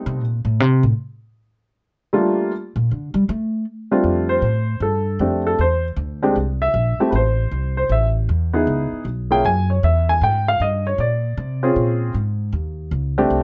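The upright bass takes a woody, pizzicato solo on steel strings for the first 4.0 seconds of this playful jazz piano trio fragment. It swings at 156 BPM in F major. The worn baby grand piano carries the melody alongside it, both up front in a dark, warm mix with light reverb, as the harmony wanders through colorful chords such as F69, Dbm7 and Abmaj9.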